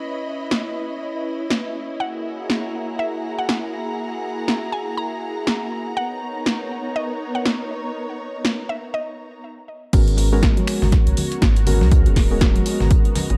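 A hazy, cassette-toned wash with light reverb carries this hypnotic deep house excerpt at 121 BPM in G# minor, where a smooth, detuned sawtooth pad under a filter sweep and a lush bowed string section pump together from the start, punchy analog drum machine snaps, hi-hats and crash arrive at 0.5 seconds, a woody FM mallet pluck with analog delay carries the melody from 2.0 seconds, and after a brief stop the drop at 9.9 seconds brings in a round sine sub bass, chorused pulse-and-sawtooth key stabs with tape echo, an up-front punchy kick, bright hard-handed bongos and congas in the background, and a very quiet, gritty breakbeat kit with tambourine.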